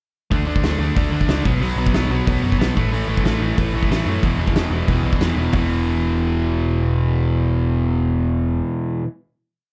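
Driving straight eighth notes power this short, rowdy and upbeat punk rock piece, where a loose indie drum kit with a fat snare and punchy kick pounds out a fast groove until 5.6 seconds, while two overdriven guitars, one sludgy and up front and one bright, hammer power chords over a growly, amped electric bass before the guitars ring out on a final chord held to 9.1 seconds, all in a dry sound.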